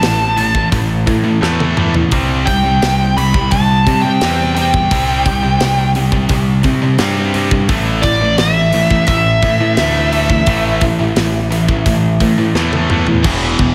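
A warm, distorted high-gain lead guitar sits up front, carrying the melody between D5 and B5 in this relentless, aggressive heavy metal excerpt at 86 BPM in a straight 4/4. Beneath it, two bright, picked high-gain rhythm guitars play riffs in the background: one heavy and touched with slapback echo, the other scooped. A growling bass, direct and amped with overdrive, anchors the low end. A tight metal drum kit drives the piece with a mid-forward, medium-tuned snare, a tight kick, toms, hi-hat, crash and china cymbals, adding fills at 1.4 s and 12.6 s. The harmony moves through A5, C5, A5 and E5, and at 13.2 s a double-tracked distorted guitar joins the riffing for the closing moment, while a moderate concert hall reverb blended with small room ambience lends the mix a big arena sound.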